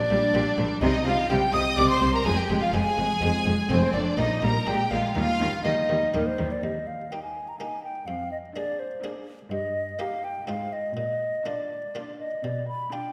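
In a driving, straight triple metre, this fragment of a baroque-style concerto movement with solo episodes carries a dramatic mood, led by a close, mellow and hollow silver flute playing the melody up front with vibrato and tongued notes. A softly attacked, expressive violin section also carries the melody from a distance, while a second, intense violin section adds a clear line, violas and cellos supply a rich, smooth foundation, and a muted, lute-like buff-stop harpsichord plucks a dry, airy accompaniment. Intense double basses anchor the bass only until 6.5 seconds, and the whole ensemble sits in a reverberant recital hall.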